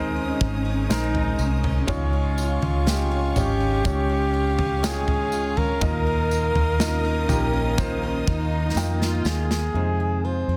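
A dense, heavily limited modern sound with light small-room reverb frames this emotional, heartfelt pop ballad excerpt at 61 BPM, where a felt-muted upright piano, bright picked acoustic guitar arpeggios, a round, foam-muted fingered electric bass and lush, clear bowed strings open together over chords moving from Abadd9 through Db and Ebsus2 to Fm7, with a dark, woody cello section adding a second line in the background. A punchy, polished drum kit enters at 0.4 s with jingly tambourine close behind. A mellow, smooth-topped flugelhorn takes the melody up front from 2.4 s with jazz-style vibrato, before a drum fill at 8.8 s.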